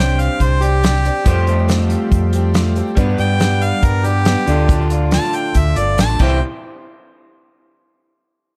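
Jangly and nostalgic, this folk rock and heartland rock excerpt features a clear harmonica solo with light vibrato and scooped notes over a boxy, shimmering twelve-string acoustic guitar in the background, a twangy, slightly broken-up electric guitar riff through a small old amp with spring reverb, a round, punchy hollow-body bass up front, a very quiet, reedy accordion holding sweet sustained chords, a grainy egg shaker, and an airy unplugged drum kit with a fat snare and tight kick played with bundle sticks, captured in a small room with a dark, warm production.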